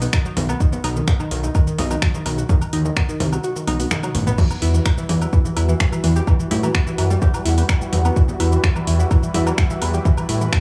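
Driving and hypnotic, this melodic techno cut in E harmonic minor moves at 127 BPM in a straight 4/4, taken from a longer piece. A fat, saturated analog bass sits up front with a thick, detuned sawtooth tone, pumping against a deep, tape-warm electronic kick that lands at 0.1 seconds. A warbly, dusty pluck spins arpeggios through chorus and tape echo, its lo-fi, wave-folded tone breathing with the sidechain. Around them, a deep house kit scatters congas, finger snaps, shaker, woodblock, toms, crash and metallic hi-hats, also fed through tape echo. The kick drops out at 3.4 seconds and a drum fill follows at 3.7 seconds. At 4.4 seconds a lush, airy unison pad rises in on sustained chords with phaser and chorus as the harmony moves from B to Emadd9. The mix is echo-heavy, with light digital reverb and small room ambience.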